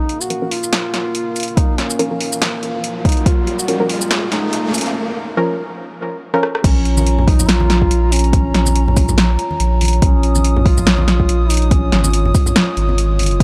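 Brooding and cavernous, this deep dubstep passage, cut from a longer piece, moves with a half-time, lightly swung feel. A mellow duduk carries the melody throughout, its scooped notes, vibrato and smooth top trailing off into dub echo, over a dark analog pad of nasal, detuned square and sawtooth tones with a sub octave and chorus. The build-up opens with a punchy, overdriven deep house kit of hi-hat, rim click, shaker, snare and crash, joined by a muted, detuned sawtooth chord stab under a filter sweep, dub echo and chorus, while an electronic riser enters at 2.1 s and an overdriven electronic kick appears briefly. After a short break and a drum fill, the drop lands at 6.6 s, where the kick returns up front beside a thick, saturated triangle sub bass, and very quiet, low-tuned congas with a thick skin sit close in the mix. The dry, gritty hardware sound is touched with light reverb and digital ambience, the drums re-recorded in a small room.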